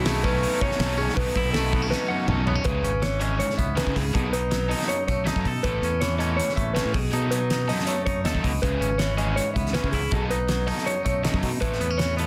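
Straight 4/4 at 161 BPM drives this intricate, playful math rock and midwest emo excerpt, where a loose indie drum kit with a fat snare and punchy kick sits up front in a pumping studio room, a growly, direct fingered bass holds the low end, a twangy, clean picked guitar plays accompaniment, a dark, fingered guitar spins arpeggios through spring reverb, and a double-tracked overdriven garage guitar carries the riff, with a drum fill from 1.9 to 2.7 seconds leading out of the opening B9sus4 into a section cycling through C#m7, B9, A and B13 under a dense, heavily limited master.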